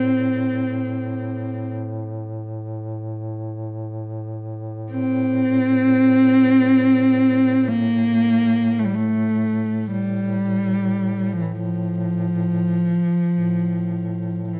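Caucasian folk in the form of a lament, this short piece moves in free time in A phrygian with a solemn, longing mood. A single bowed cello carries the melody from start to finish, sitting up front and close with a dark, woody tone and vibrato, ranging from E3 to C4. Beneath it, a mellow duduk holds a drone on A2 throughout the 14.6 seconds, played in folk style with vibrato and scooped notes, close-miked but set lower in the mix. A moderate scoring stage reverb with a decay of 1.7 seconds gives the pair a sense of space, and the production leans dark and warm. The recording is cut from a longer piece, presenting a single unbroken section of mournful song over a sustained tone.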